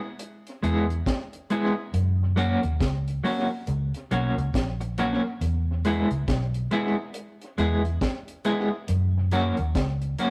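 A deep, dry reggae drum kit with a tight kick, high-tuned snare, hi-hat and a touch of tape echo opens this serious, meditative roots reggae excerpt at 69 BPM with swung sixteenths. At 0.6 s a round, punchy, foam-muted electric bass and a clean, picked electric guitar with tremolo join, sitting up front as the harmony moves between E and F#. A moderate stone-room reverb, warm saturation and lossy compression artefacts give the whole a rough rehearsal-room feel.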